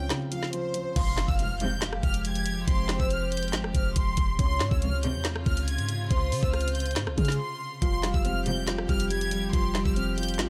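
Menacing and dark, this half-time trap excerpt sets a lush, distant violin section's melody over a knocking trap kit with a woody snare and bright hats, a deep, boomy 808-style bass, a dark grand piano heard at the start and again from 7.8 s, a velvety synth lead with chorus and tape echo, reedy strings holding chords, brief dark symphonic string stabs, and a very quiet electronic impact at 1.0 s, all in studio reverb.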